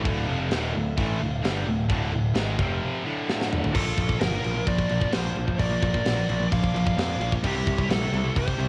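Heavy metal in a dark, aggressive mood, this short excerpt cut from a longer piece moves in a straight 4/4 over D minor, F, B-flat and C chords, with a home-cassette sound and little reverb. Three distorted guitars play riffs in the background, one compressed and scooped, another double-tracked, with a tape-worn edge, while a growling picked bass, overdriven and punchy, sits beneath them. A tight drum kit sits up front with bright cymbals, a high-tuned snare and a taut kick, playing crash, snare, kick and toms from 0.1 seconds. A very quiet string section holds floating, pure sustained chords throughout. After a break from 2.8 seconds and a drum fill at 3.3 seconds, a dark-toned high-gain lead guitar enters at 3.7 seconds with a melody, alongside a very quiet second lead line beneath it.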